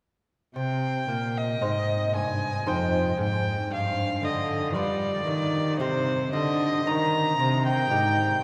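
A cathedral's long, wet reverb surrounds this short fragment of a baroque-style sonata movement in C minor, moving at a slow 58 BPM in 3/4 with a flowing, solemn mood. Up front, a single bowed violin carries the melody with vibrato and a focused, smooth top, while a bowed cello supplies a warm bass line with vibrato and expressive portamento. A bright, delicate, fingerpicked lute on doubled gut strings fills in the continuo accompaniment, all three playing together from 0.6 to 8.4 seconds as the harmony moves from C minor through G7, back to C minor and on to E-flat.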